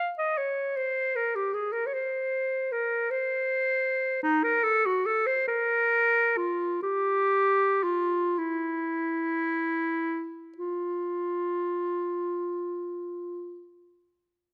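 A lone clarinet, bright and placed up front, carries this classical piece entirely by itself, its line moving between Eb4 and F5. The mood is lonely and yearning, with the phrasing held in a free, rubato 6/8 that gives each gesture room to breathe. Across the opening passage the pace gradually slows from 3.1 to 10.6 seconds, and then a new section begins, with the clarinet sounding until 13.7 seconds. Close, detailed microphones keep the instrument present and intimate, while a light reverb adds a touch of space around it. This fragment is cut from a longer work, so it feels like a brief, searching moment lifted from a larger solo.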